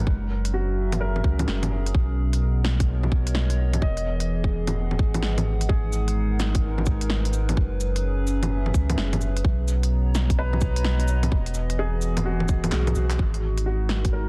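A swung 4/4 groove drives this nocturnal, ghostly future garage excerpt, built on a tight, up-front electronic kick and a garage kit of cracking snare with soft clipping, crisp hi-hats, handclaps, bongos and cabasa, both re-recorded in a large room for a tape-tinged weight. Beneath them a round, deep sine sub bass sits up front with a fast attack and sustained notes. A dark, warbling, nostalgic lo-fi pad with chorus and its own reverb carries sustained chords across a broad range with sidechain pumping. An intimate upright piano with woody tone, audible action noise and tape echo plays accompaniment in a narrow upper-middle register, also shaped by sidechain pumping. The harmony cycles through Bmaj7, Emaj7, G#m7 and F#7sus4, and a drum fill at 12.7 seconds leads into a brief closing section at 13.2 seconds, all within a dense, heavily limited, dry master.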